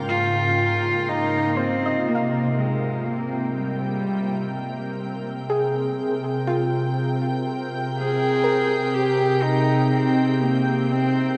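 A bright, organ-like pad sustains chords up front while a soft, round pluck ripples arpeggios alongside it, and a dark, reedy solo cello enters almost at once with a smooth, period-style melody, all bathed in a huge, lingering reverb that gives this short ambient passage a luminous, serene calm. From 1.6 seconds the harmony settles onto a rich major chord as a filter sweep opens on the pad and a chamber violin section with light vibrato and gut-string tone fades in gently from the background.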